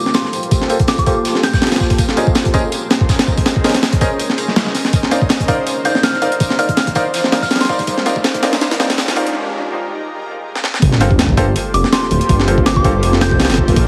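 A gritty, pitched-up sampler breakbeat with a thumpy kick and high-tuned snare drives this raw, frenetic drum and bass excerpt up front, while a crunchy, saturated second kit with tambourine rattles in the background until 9.3 seconds. A blurred, evolving granular pad sustains minor eleventh chords throughout, joined by bright, brilliant grand piano stabs under sampler grit and dub echo, soft FM bell phrases washed in chorus and echo, and a distant riser and sub drop through a filtered build-up and short break. At 10.8 seconds the drop lands with an impact and a thick, menacing detuned saw bass, all pressed into a heavily compressed, radio-like sound with vinyl crackle and a plate reverb.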